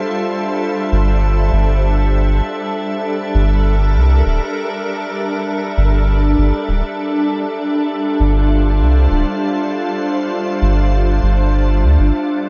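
A deep, round dub sub bass sits up front from 0.9 seconds, its soft tone blending triangle and square waves with a fast attack and long sustain, reaching down to D1. Also up front from the start, a calm, organ-like additive pad holds sustained chords, its pure sine and triangle tones thickened by detuned unison, ring modulation and ensemble chorus, with a slow attack, long release and its own built-in reverb lending a bright shimmer. This short fragment of ambient dub moves at an unhurried 99 BPM in straight 4/4, tuned to A4 = 442 Hz. The harmony drifts from Dm11 to Gm69 and back to Dm11, keeping the mood spacious and hazy. A light digital ambience surrounds the recording, adding to its airy, suspended feel.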